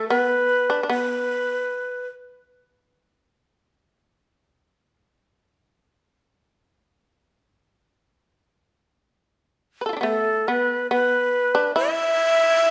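Austere and calm, this excerpt of Japanese chamber music moves in a free, rubato 4/4 at around 66-77 BPM, with a breathy, reedy end-blown bamboo shakuhachi carrying the melody up front over a quieter, buzzing, percussive plectrum-plucked shamisen second line; both sound together until 2.1 s, then the shamisen re-enters at 9.8 s and the shakuhachi at 10.0 s for the closing section, all set in the moderate reverb of a recital hall.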